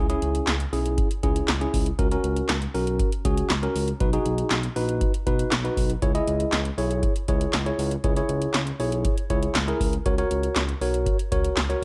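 Up front in the mix, an electronic analog drum machine sets the pulse from 0.1 seconds, its dry, deep kick, punchy snare, metallic hi-hats and handclaps driving a straight 4/4 groove at 119 BPM. This is a cool, nocturnal synth-pop piece in C# dorian, heard as a short cut from a longer track. A tine electric piano carries the accompaniment in a clean, warm tone that sounds as if it comes through built-in speakers, sitting forward alongside the drums. Beneath them, a smooth synth bass blends sawtooth and square-wave tones with a fast attack, sustained notes, vibrato and a mellow, evolving character. The harmony moves through C#m, F# and B before returning to C#m, then shifts to F# near 10.1 seconds. Light reverb and a digital ambience give the mix a subtle sense of space.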